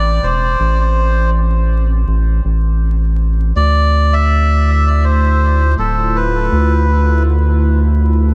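A straight 4/4 pulse at 81 BPM carries this short, hazy ambient dub excerpt, which is cut from a longer piece and tuned slightly sharp to A4 = 441 Hz. Up front, a round analog bass holds down the low end from D1 to D2, its deep, dark tone blending square and sine waves with a filter pluck and fast attack that sustains. In the background, an airy, breathy pad fades in across the full 8.3 seconds, laying sustained, detuned chords with a slow attack, long release and a soft noise layer, thickened by chorus. A reedy, vintage-sounding melodica carries the melody between A4 and E5, its band-limited, plastic tone trailing dub echo until it drops out at 7.2 seconds. The harmony moves from Am to Dm7 at 3.6 seconds. The echo-heavy mix sits in light small-room ambience with a layer of vinyl crackle, giving the piece a spacious, hazy air.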